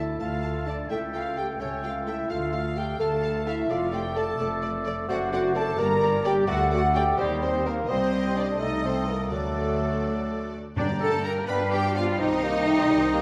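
Classical-period orchestral music in a quick 6/8 at 85 BPM, this stormy, dramatic passage cut from a longer piece starts in D minor and moves to G minor from 5.1 s. A close, rich violin section carries the melody with vibrato, while a more distant second violin section, airy flute, clear oboe and a roomy clarinet weave supporting lines above a background viola section and close-miked bassoon. Mellow French horns hold sustained chords over bowed cellos and a double bass section with a smooth top, and soft-mallet timpani with a round sound strike only at the opening and again from 10.8 s, all set in a lush scoring-stage reverb.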